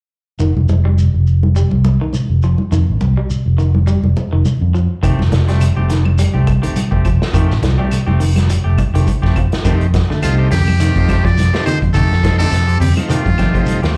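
Driving, funky afrobeat excerpt at 104 BPM in F mixolydian with a 16th-note swing, heard live through a club PA, where a round, dark, up-front fingered bass and a twangy, slightly broken-up guitar arpeggiating over F9 with lush chorus and slapback echo open alongside grainy shekere and thick-skinned congas, a punchy vintage drum kit, woody claves and a second guitar's stabs with analog delay join at 5.0 seconds, and a buzzy combo organ at 9.6 seconds precedes a brilliant, thin muted trumpet melody with vibrato and scooped notes from 10.2 seconds.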